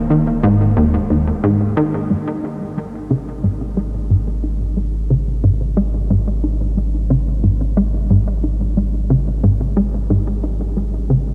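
Mysterious and cosmic, this short cut from a longer piece of ambient, sequencer-driven space music sets a punchy, wave-folded analog bass riff with subtle chorus and delay up front over a deep, round sine sub bass, with a filter sweep on the riff from 2.1 s, inside a huge, dark reverb space.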